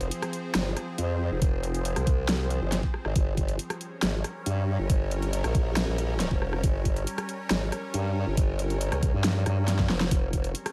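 A half-time 4/4 pulse at 138 BPM drives this chaotic, heavy wobble dubstep fragment, tuned to A4 = 436 Hz, with a produced electronic kit of huge snare, bright hats and rim click sounding tape-warm, joined at 1.4 s by an overdriven, knocking electronic kick, and a drum fill arrives at 9.8 s. Up front, a compressed formant-sweep wobble bass built from pulse and sine tones churns low with chorus and overdrive. Behind it, an evolving, detuned unison wavetable pad with slow attack and long release holds sustained chords moving from Fm to Gdim and back to Fm, its phaser, built-in reverb and sidechain pumping set against an otherwise dry mix.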